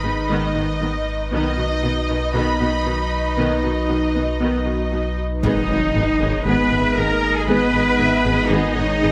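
A vast, brooding hybrid orchestral and electronic film score in G# minor at 117 BPM, moving from G#m to B and back, with two lush violin sections carrying the melody and a distant second line over a rich viola section, a clear cello bass, a deep sine sub bass, an evolving, detuned wavetable pad with chorus and built-in reverb, and a round, tine-like thumb-piano-like synth pluck playing arpeggios through chorus and tape echo. At 5.4 seconds a mellow French horn section, a vintage trombone section, a punchy tuba and a very quiet double bass section enter with a faint electronic impact, the trombones stopping at 8.7 seconds. A moderate scoring stage reverb gives the excerpt its spacious, cinematic depth.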